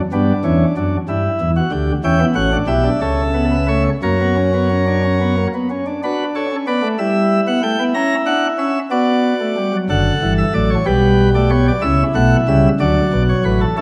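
Elegant and lively, this short cut from a longer baroque-style four-part fugue in 6/8 is played solo on a chamber organ's principal chorus, whose full, chiff-edged voicing sits up front within a wet scoring-stage reverb as the harmony moves from G through Em and F# toward an A chord at 11.9 seconds and a closing D at 12.8 seconds.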